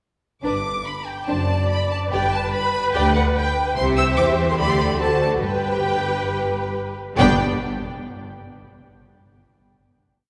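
A lush first-violin section carries the graceful melody up front, its vibrato and soft attack giving a spirited, classical-period string movement an expressive lead, while a second violin line adds short accented chords in the rhythm of the tune and sustained harmony. At 1.3 s the violas join with a counter-melody marked by portamento, over a focused, clear cello bass on the beats with passing notes and a double bass section doubling that line. A church reverb with a 2.8-second decay wraps the ensemble in hall ambience, and the piece closes on a final chord at 7.2 s.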